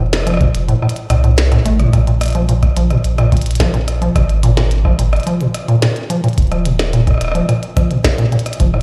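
IDM excerpt with a cerebral, intricate mood, where a rubbery, resonant acid bass spins dark, saturated square-wave arpeggios through dub echo over a round sine sub bass, while a tape-warm analog kick enters at 0.4 seconds alongside a glitchy kit of tiny snare, rim clicks and clicky hats re-recorded in a large room, all moving through F, Bb5, Absus2 and Eb5 in a bare space filled by a big sound system and large studio reverb.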